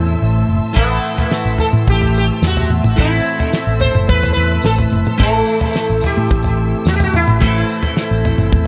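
Psychedelic rock in A minor at 108 BPM, this short, dark and hypnotic excerpt rests on a single A minor chord in a straight 4/4 feel. From the opening, a bright, twangy twelve-string electric guitar plays a clean, compressed riff, double-tracked and coloured by flanger and analog delay, over a punchy, amped picked electric bass. Behind them a muted studio string section holds soft, veiled chords, bowed con sordino with vibrato and a lush, smooth top. At 0.8 seconds a buzzing, shimmering sitar enters up front with the melody, its sympathetic strings ringing through analog delay. A damped 70s drum kit also enters there, with a fat, dry snare, tight kick and toms, while a jingly tambourine with its own delay sits close yet in the background. The mix is echo-heavy, wrapping the parts in studio ambience.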